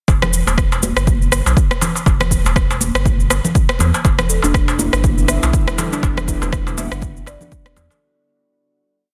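A four-on-the-floor kick anchors this short afro house piece in 4/4, with a swung sixteenth-note feel that gives the hypnotic, spiritual groove its lilt. The punchy, overdriven electronic kick sits up front, while layered programmed shaker and rim click supply the hats and backbeat, also with overdrive. Bright acoustic congas play interlocking high and low parts alongside a crisp, saturated metal-shell darbuka weaving a hand-drum cross rhythm. Underneath, a round, deep analog bass plays a syncopated riff with tube saturation and sidechain pumping over a single Em7 chord. A woody, ringing kalimba enters at 4.3 seconds with a repeating 12-step loop that drifts against the bar, colored by tape echo, and an ethereal, airy pad with chorus, phaser and reverb arrives at 4.9 seconds in the background, shortly before the fade-out begins at 5.4 seconds. The dense, heavily limited master keeps the sound full and modern.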